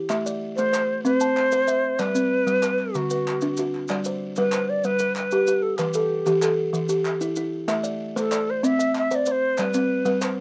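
Light reverb gives this short cut from a longer piece a gentle sense of space as it rolls through a rippling southern African traditional mbira-style interlocking cycle in 12/8. A buzzing, woody kalimba plucked by thumb sits up front with arpeggios from the start, joined at 0.1 seconds by hollow, vintage-sounding group handclaps and grainy, mellow maracas heard close and dry. At 0.6 seconds an airy cedar flute in Native American style enters up front, carrying the melody with a soft attack and expressive vibrato as the music moves into a new section at 3.9 seconds.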